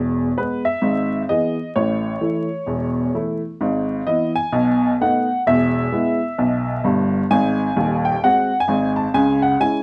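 Stride piano jazz, exuberant and swinging, heard in a brief cut from a longer piece. A single upright piano carries everything on its own from 0.0 to 9.8 seconds, ranging from deep bass notes up into its upper middle register. Its tone is clear and woody, slightly detuned, with long sustain, and it sits present and up front in the mix. The harmony moves from E through A and a B7 back home, then turns toward G#7 and lands on C#m near 9.2 seconds. A moderate club reverb surrounds the playing, while the dark, warm production adds vinyl crackle and rolls off the top end.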